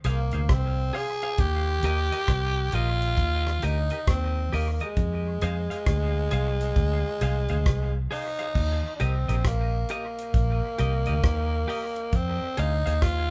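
A raspy, growling tenor saxophone carries the melody up front in this laid-back, sunny roots reggae excerpt at 67 BPM in Eb major, its breathy tone touched with light vibrato as the harmony moves between Fm and Eb. Beneath it, a dark, foam-muted fingered electric bass sits round and punchy in the mix, while a damped 70s drum kit keeps a dry groove of kick, hi-hat, rim click and crash, with a swung sixteenth-note feel. A bright, twangy clean electric guitar plays quieter accompaniment through dub echo until 12.9 seconds, and the band sounds as if it is playing together in one room with light reverb.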